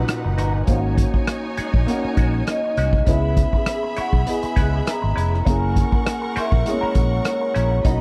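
Silky and cinematic, this lush 1970s-style soul passage moves at 100 BPM with a light swing, as an up-front vintage drum kit of hi-hat, punchy kick and rim click and a round, amped fingered bass anchor a dark, mellow grand piano with audible action noise, moving through Bmaj7, G#7sus4, C#m7 and F#7. A clean, compressed semi-hollow guitar riff with wah and spring reverb sits beneath a distant, bowed string section full of vibrato and portamento. At 2.5 seconds a metallic, ringing vibraphone played with medium mallets takes the melody, all captured in a dry, close studio sound.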